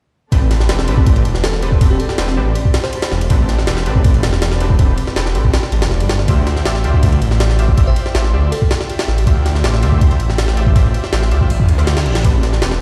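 A straight, driving jungle breakbeat carries this nostalgic, raw drum and bass excerpt, its sampler-style kit gritty and pitched up, with a thumpy kick, a high-tuned snare and ride cymbal sitting up front and sounding re-recorded in a large room. Beneath it, a thick, menacing detuned saw bass holds long, saturated notes that beat against each other, just as loud as the drums. In the background, a soft-bowed string ensemble floats distant, sustained chords moving from Am11 to Dm11 and back, while a bold, nasal orchestra-hit-style synth stab punches through with short, bright bursts trailed by dub echo. A bell-like FM electric piano adds sparkling, mellow melodic fragments at 1.4 and 7.4 seconds, colored by chorus, phaser, cassette-tape grit and its own dub echo. An electronic reverse cymbal rises at 11.7 seconds, and the whole mix sounds as if played over a big sound system in a bare stone room.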